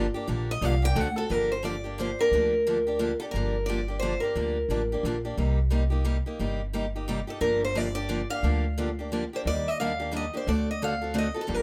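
A swung 3/4 pulse at 176 BPM drives this virtuosic, bittersweet slice of jazz manouche in G minor, cut from a longer piece and moving through chords such as Gm7, Cm7, Ebmaj7 and D7#9. An upright bass with gut strings, plucked pizzicato, gives a woody, dark, thumpy low end up front, beside a boxy, parlour-toned picked steel-string acoustic guitar playing the accompaniment. A second picked steel-string guitar, bright with fresh strings, carries the melody from 0.5 seconds, pauses between 5.2 and 7.3 seconds, then returns, all within light reverb.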